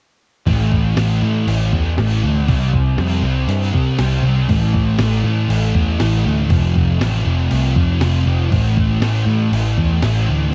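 This short excerpt from a longer piece has the dry, close sound of a home cassette recording, with little reverb and a faint tape haze. It is melancholic, dreamy shoegaze and dream-pop rock in a straight 4/4. A thick, double-tracked fuzz guitar sits up front, carrying the riff through an analog chorus and cassette tape coloring as the chords move from A5 to C5, back to A5, to F and home to A5. Beneath it, a vintage foam-muted electric bass, dark, round and amped, is picked low and also sits prominently in the mix. A clean 12-bit sampler-style drum machine supplies a thumpy kick, a medium-tuned snare and crash cymbal, its tape-warm hits stopping at 10.1 seconds while guitar and bass continue to 10.5 seconds.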